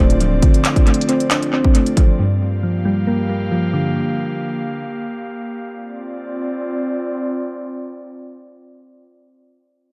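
A trap drum kit sits up front at the opening, with a hard-clipped kick, crisp hi-hats and handclaps carrying a tape echo, before dropping out at 2.1 seconds. This dark, eerie hip hop fragment, cut from a longer piece, moves with a half-time feel. Soft, round electric-piano-like synth keys with a vintage warble and a mellow, decaying tone play the accompaniment through chorus, low-pass filtering and tape echo until 4.8 seconds. Alongside them, an airy, breathy pad with detuned layers and a noise edge holds sustained chords until 9.0 seconds, shifting from Dm7 to Gm7 and back to Dm7. A filter sweep runs through the first section, and the echo-heavy digital ambience gives the whole fragment a hazy, suspended feel.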